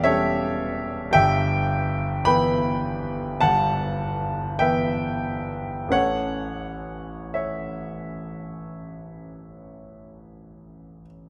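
Nostalgic and dreamy, this brief fragment of a romantic nocturne for solo piano unfolds in 12/8 with a free, rubato feel. A clear concert grand carries everything alone, reaching from deep bass notes up into the upper middle of the keyboard. Its tone is natural and up front, with a rich low end that grounds the harmony. The chords move from A7 over E to E minor over G at 1.1 seconds, then settle onto A at 5.9 seconds. A moderate recital hall reverb surrounds the instrument, giving the 11.3-second passage a soft sense of space as it is cut from a longer piece.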